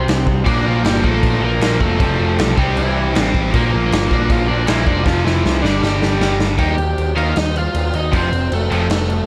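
A rowdy, energetic punk rock burst opens with a crunchy overdriven guitar carrying the melody over a biting guitar riff that sits in the background, while a growly, punchy picked bass pushes up front and a raw garage drum kit crashes in with punchy kick, medium-tuned snare and crash cymbal. A cranked stack guitar joins on riff from 0.4 seconds, adding bright, overdriven heft to the straight 4/4 drive. The drums sound saturated and gritty with a dark, rolled-off top, set in a stone room yet kept close with little reverb. The chords move through Bb, F and C before power chords on F5 and G5, and a drum fill from 5.1 seconds leads into a half-time section at 6.6 seconds that lands on Eb and then F. This short cut from a longer piece ends with the riff guitars dropping out just before 9 seconds, the bass and drums stopping soon after, and the melody guitar carrying on to the close.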